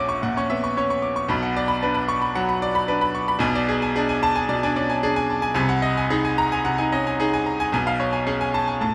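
A bright grand piano opens at once on an F#7/A# chord, launching this stormy, passionate classical study in B minor, cut from a longer piece. The solo piano carries everything for the full 8.9 seconds, moving through a virtuoso passage that spans A#1 to D6 at a tempo of 112 BPM in 4/4, with a flexible rubato feel. The harmony turns restlessly from Bm to G#dim/B, then G#7/B# and finally C#7/B at 7.7 seconds. The instrument sounds brilliant, intimate and up front, with long sustain and audible action noise that places the listener close to the keys. Light reverb and a dark, warm production frame the piano's glittering tone.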